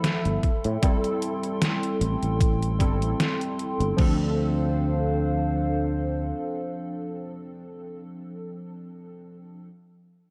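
Hazy and woozy, this vaporwave excerpt in a gently swung 4/4 sets mellow, warbling lo-fi synth keys with ensemble chorus and analog delay over a dark, tape-like pad with slow attack and long release, while a growly, punchy fretless bass enters at 0.3 seconds and a thumpy overdriven electronic kick joins a detuned, overdriven 8-bit drum machine of snare, hi-hat and crash until 4.2 seconds, all blurred by a concert hall reverb and cassette tape sound as the chords move from Am7 to Dm7.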